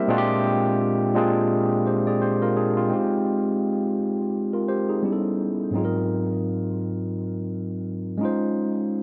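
Sultry and introspective, this short R&B passage is cut from a longer piece and rests on a swung sixteenth-note feel in 4/4. A lone overdriven tine electric piano carries everything from start to finish, its barky, gritty tone pushed through a combo amp and placed up front. Dub echo trails its phrases, and light reverb sits around an echo-heavy mix. The opening stretch settles on a Bb13 before the harmony moves at 2.9 seconds into a new section on Fm9. From there the chords drift through A9 and Ab13 to land on Dbmaj9 at 8.2 seconds.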